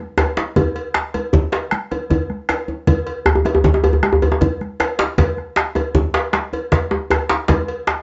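Earthy and driving, this short cut from a longer West African drum ensemble piece rolls along at 104 BPM in 12/8, with a round, vintage-toned bombo, a metallic cowbell, two djembes (one medium-tuned, the other tight, cracking and up front), and high-tuned congas with a damped, thick-skinned sound played with soft hands, all starting within the first 0.4 seconds and sitting in moderate studio reverb with a dulled top end.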